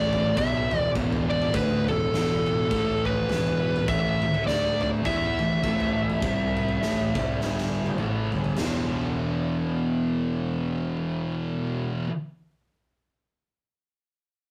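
Stoner and doom metal at 102 BPM in E minor with a sludgy, ominous swing, this rough rehearsal-room excerpt sets a dark, up-front fuzz lead guitar with digital delay against two thick fuzz guitars grinding out the riff, a growly overdriven fingered bass low in the background, and a big acoustic kit with bright cymbals, punchy kick and china, whose fill at 7.4 seconds leads into a new section at 8.6 seconds, the lead having already dropped out just before it and the drums stopping soon after.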